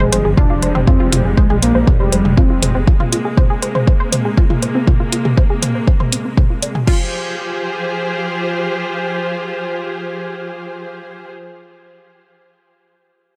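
Melodic techno at 120 BPM in F minor, driving and dramatic: a thick, nasal unison lead carrying gritty 12-bit sampler character and dub echo drops out at 2.7 seconds and a menacing, saturated detuned saw bass at 2.8, while dark, woody bowed strings hold sustained chords moving from Fmadd9 to Abadd9 and back, a lush unison pluck runs arpeggios through a filter sweep with delay, a house kit adds metallic hats, crash and toms, a barely audible sub drop marks the opening impact, and a punchy, up-front electronic kick enters at 0.4 seconds, with sidechain pumping on the lead, bass, pluck and strings in a dry mix cut from a longer piece.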